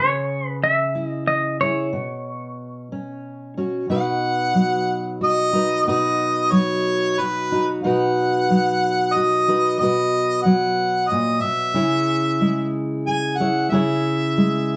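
A straight, unhurried 3/4 sway at 92 BPM carries this hopeful, gentle acoustic folk piece in B major, cut from a longer performance. A fingerpicked steel-string dreadnought guitar plays the accompaniment throughout, bright and full-bodied with the sparkle of fresh strings. For the opening 3.5 seconds, a clean, compressed semi-hollow electric guitar carries the melody up front, its fingered notes shimmering with harmonic tremolo over C#m and Bsus2. At 3.9 seconds a clear harmonica takes over with a solo in a classical style, its light vibrato sitting over a move to B before C#m returns near the close. The small band sounds as if playing live together in one room, bathed in a wet studio reverb.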